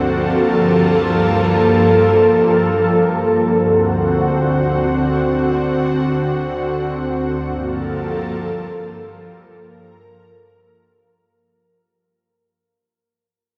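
In free time, this melancholic, hazy hip hop excerpt in G minor, tuned to A4 = 441 Hz, is carried entirely by a solo ethereal pad that spans D2 to Bb4 and sits up front, its detuned sawtooth and triangle voices shaped with a slow attack and long release and dressed in ensemble chorus, built-in reverb and tape echo. The harmony moves from Gm9 to D7 at 3.6 s and back to Gm9 at 7.4 s, while a fade-out runs from 3.6 s to the end at 11.3 s. A plate reverb with a 2.6-second tail soaks the whole mix, giving it a dreamy quality.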